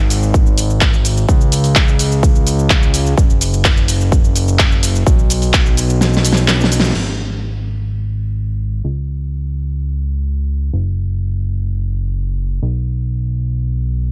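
Bathed in light reverb and digital ambience, this euphoric, powerful festival progressive house excerpt opens on a drop, with a punchy, layered electronic kick up front and a big-room dance kit of huge snare, handclaps, hi-hat, shaker and crash cymbal. A fat, saturated analog bass built from detuned sawtooth and square waves, with a filter pluck and sidechain pumping, drives underneath. The kick falls away at 6.0 seconds for a drum fill capped by a band accent, and from 7.0 seconds the thick, sustained bass carries on alone.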